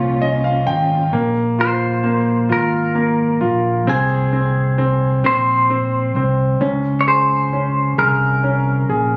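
Swaying and romantic, this six-eight pop ballad moves at a slow 44 BPM in dotted quarters, cut from a longer piece. A clear concert grand piano carries the accompaniment throughout, polished and present with a deep low end and short sustain, and it opens with a fill in the first 1.1 seconds. Beneath that opening, a muted studio string section holds dark, veiled chords with vibrato and a soft bowed attack, sitting in the background before dropping out at 1.1 seconds. A clean electric guitar takes the melody up front, bright and twangy with a compressed, picked tone dressed in lush chorus, while a fingered electric bass sits punchy and amped beneath it. The harmony moves from Bbm through Bb5 and Ab/C to Db5, and the whole passage has light reverb and small-room ambience, recorded on a phone in the room and given a club reverb.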